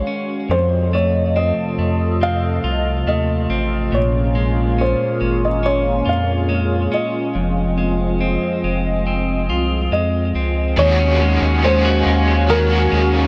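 A slow, straight 4/4 pulse at 70 BPM carries this hazy, melancholic dream pop fragment in Eb dorian, cut from a longer piece, where a soft felt-muted upright piano with audible action noise sings a delayed melody over a swirling, detuned analog pad treated with phaser and chorus. A clean, picked electric guitar plays arpeggios with subtle chorus and delay, while a round, deep analog bass sits up front beneath chords moving from F7 through Bbm7 and Fm7. At 10.8 s the harmony settles on Ebm11 as a double-tracked overdriven guitar joins with tremolo and analog chorus, all bathed in a huge ambient reverb.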